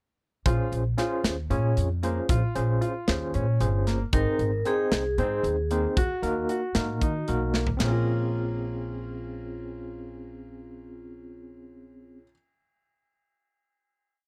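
Progressive instrumental band music in a straight 7/8 at 229 BPM in Bb minor, driving and intricate, opens at 0.5 s with a barky, overdriven tine electric piano in fast tremolo playing syncopated rootless chord stabs through a combo amp, a natural baby grand piano ostinato, a woody, thumpy pizzicato upright bass riff on gut strings, and a tight metal drum kit with a rolled-off top in a 7/8 groove, joined at 4.1 s by a metallic, ringing vibraphone with medium mallets and slow motor vibrato answering in the melody's rests, until a drum fill at 7.5 s leads to a final Bbm7 chord held to about 12 s, all captured in a dry, close 1970s-style studio sound.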